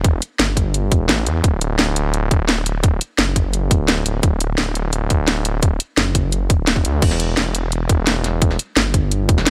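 A straight 4/4 pulse rolls along at 172 BPM in this melancholic liquid drum and bass excerpt, driven by a tight, overdriven electronic kick and a layered garage kit whose cracking snare, crash cymbal and hi-hats carry a small-room character. Underneath, a menacing detuned sawtooth bass with sine weight sustains from D1 to E2, its saturated tone evolving through a filter swell. Every part sits up front in a dry mix across the 9.5 seconds.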